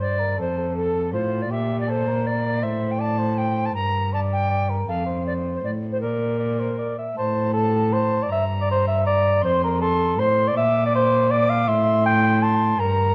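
Classical renaissance-style consort dance in triple metre, courtly and festive, cut from a longer piece in which a repeated phrase cycles through the same chords twice over about 13 seconds. A mellow alto recorder with a pure, woody tone and gentle vibrato carries the melody, set a little back behind an up-front cor anglais whose dark, smooth second line sits beneath it, while a single bowed cello with a rich gut-string, period sound anchors the bass. The trio plays together throughout in a stone room with moderate reverb, and the production is dark and warm, marked by lossy compression artefacts.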